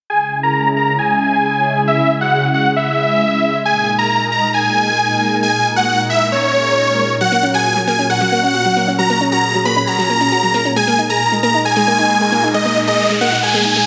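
Trance at 135 BPM in straight 4/4, this excerpt carries an emotional, bittersweet mood, tuned slightly sharp to A4 = 441 Hz. A huge, detuned supersaw carries the melody between C#5 and B5, sitting up front with a fast attack, passed through a low-pass filter with a sweep across the whole passage and a tape echo trailing behind it. Beneath it, a silky, string-like analog pad holds sustained chords from A#2 to A#4, its slow attack colored by ensemble chorus and phaser. At 7.2 s a round analog pluck enters with decaying arpeggios between F#3 and G#4, its noise layer and moving notch giving it motion under a chorus. An electronic riser arrives at 11.9 s to push toward what comes next, while the harmony moves through C#m, D#sus4, F# and G#sus2, all set in a lush hall reverb.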